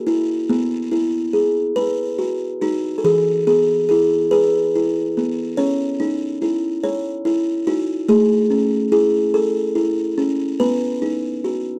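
A lilting 6/8 sway at a rubato 48 beats per minute, counted in dotted quarters, sets the gentle, sleepy pace of this children's piece in E major, cut from a longer work. A buzzing kalimba plays alone for the full 11.8 seconds, its fingertip plucks ringing out with a woody, hollow-box tone between E3 and C#5. The opening section drifts from E/B to B, and at 3.1 seconds a second section begins, moving through E, C#madd9, A and finally B at 10.6 seconds. The instrument sits up front in a dry, close 1970s-style studio sound with very little reverb, so its soft buzz and mellow resonance come through clearly, like a lullaby for drowsy little ones.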